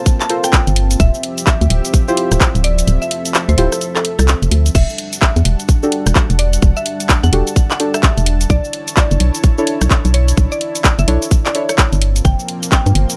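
UK garage in a two-step style, this skippy, moody excerpt runs at 128 BPM in E minor with a 62% swing on the sixteenths. The tight, tape-tinged electronic kick sits up front with the organ-like FM bass, whose hollow, dark tone carries the low end, while the garage drum kit adds cabasa, crash cymbal, handclaps, hi-hat and rim click in a layered, produced sound with studio ambience. Behind them, a smooth analog pad holds sustained chords with chorus, vintage 12-bit sampler grit and sidechain pumping, and deep, nasal chord stabs with chorus and delay sit a little further forward. A woody, round mallet-like synth pluck carries the melody with its own chorus and delay. The harmony moves through Gm11, Dm11, Em11 and Bm11, and the kick drops out between 2.9 and 4.8 seconds before returning under the Em11 change.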